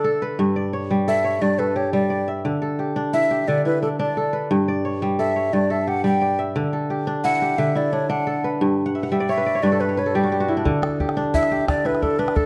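West African traditional string and xylophone music in 12/8 at 117 BPM, this hypnotic, flowing excerpt from a longer piece sits in D major with a straight feel. A fingerpicked kora carries the arpeggios throughout, its ringing, crisp tone placed up front and ranging from G2 to F#5, and it breaks into a fill from 8.9 to 10.7 seconds. Above it, a metal jazz flute plays the melody between A4 and G5 with an airy, hollow straight tone and tongued notes. A small calabash joins at 10.7 seconds, close and dry, adding percussion for the final moments. The harmony moves between G and D, and a moderate recital hall reverb gives the whole a gentle sense of space.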